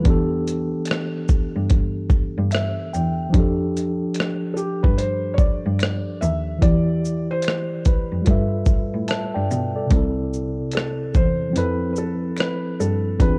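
The recording has a dark, warm production with light studio reverb, and this short cut from a longer lo-fi hip hop piece feels dreamy and nostalgic, with a lazy swing on the sixteenths. Up front, a dusty soul sampler-style drum kit plays hi-hat, thumpy kick, rim click and shaker. Its compressed sound is roughened by overdrive and vintage 12-bit grit, as if re-recorded in a small room. A mellow, clean tine electric piano carries the chords throughout and adds a brief fill at 2.1 seconds, while a single bowed cello holds the bass line, rich and focused with vibrato. Very quiet, close finger snaps arrive at 0.9 seconds for a human touch, and at 4.5 seconds a felt-muted upright piano takes the melody, soft and intimate with audible action noise, as the harmony drifts from G69/E through F69 and Em7 toward C6 and Fmaj7.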